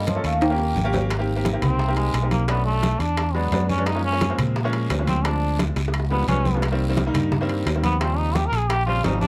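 This sunny, danceable Afro-Cuban jazz piece, cut from a longer performance, opens with a drum fill as a metallic, airy vibraphone with fast motor vibrato and analog delay sounds a brief melody that ends at 0.9 seconds. Beneath it, a bright, woody, slightly detuned upright piano plays the accompaniment, and a dark, amped, round fingered electric bass sits up front. At 1.1 seconds the muted trombone takes a jazz-style solo, its metal mute giving a brilliant, buzzy, thin tone with a smooth top, placed well forward in the mix. The percussion includes ringing timbales with a metal shell, close and dry, alongside soft-handed congas with thin, medium-tuned skins and low-tuned, vintage, band-limited bongos, both kept in the background. A raspy guiro and very quiet, woody claves add detail, and a second drum fill arrives at 5.8 seconds as the harmony moves through rich jazz chords under light reverb.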